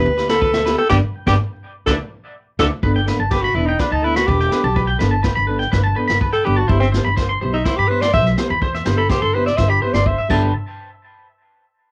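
Highlife guitar band music at 125 BPM in G major, danceable and carefree, where a clear, punchy alto saxophone with vibrato takes a jazz-style solo from 2.8 seconds over a mellow, dark electric guitar, bright twangy picked guitar arpeggios with analog delay, a woody pizzicato upright bass up front and a distant jazz brush drum kit with dark cymbals and a boomy kick that plays a fill at 2.3 seconds, all in a dry home recording on cassette cut from a longer piece.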